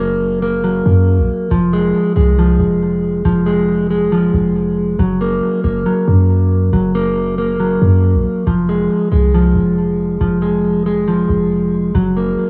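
Menacing and dark, this trap-flavoured hip hop fragment moves at 138 BPM with a half-time feel in F phrygian, cut from a longer piece and circling between Gb and Fm. A mellow, clean electric guitar sits up front with fingered arpeggios, softened by a low-pass filter, cassette tape character and tape echo. Beneath it a deep, boomy 808-style bass with a sine tone, a noise layer, a fast attack and a decaying tail fills the low end, all captured as a dry home cassette recording with small room ambience.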